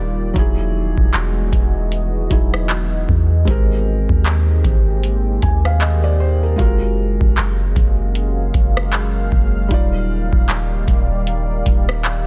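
A booming analog drum machine comes in at 0.4 seconds with a swung 16th-note feel at 77 BPM in 4/4, its kick, handclaps, rim click and metallic hi-hats sitting up front. This smooth, romantic contemporary R&B fragment in Ab lydian is built on a soft, round 808-style bass, a dark sine tone with a fast attack that decays and sits prominently in the mix. A felt-muted upright piano plays mellow, intimate accompaniment with audible action noise and a vintage character. Alongside it, a moody ambient pad of detuned sawtooth unison and a sub octave holds slowly blooming, evolving chords, softened by chorus and its own reverb. The harmony moves through Emaj9, Abmaj9, Gbmaj9 and Ebmaj9. The mix has a digital ambience and a dense, heavily limited modern master.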